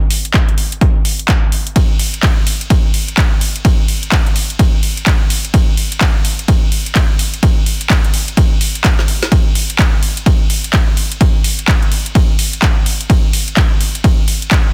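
Gritty and bouncy, this house excerpt at 127 BPM swings its 16ths over an up-front, punchy, overdriven electronic kick with a roomy re-recorded edge, while a garage drum kit of handclaps, metallic hats, ride cymbal and a woody snare rides lower in the dense, heavily limited mix, and a drum fill arrives at 8.8 seconds.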